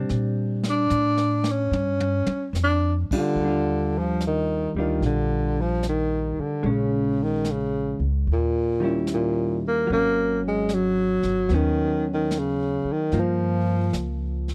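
A breathy tenor saxophone leads this romantic, intimate jazz ballad, its mellow subtone voice carrying vibrato and scooped notes up front, with a solo stretch over the opening 3.4 seconds. Beneath it a dark, clean hollow-body electric guitar comps with picked, compressed chords, while a woody, thumpy upright bass on gut strings anchors the harmony. A brushed drum kit with dark cymbals and a boomy kick swings gently, adding a fill between 0.9 and 2.5 seconds, all captured in a dry, close 1970s-style studio sound.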